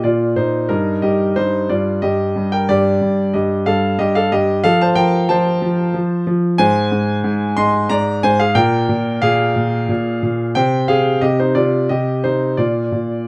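A clear concert grand piano plays alone, up front with a deep bass and long sustain, in this playful, graceful fragment of a classical-period sonatina in an unhurried triple metre, its chords moving from Eb/G through F and Abadd9 to Cm before settling on Bb, all wrapped in a moderate studio reverb.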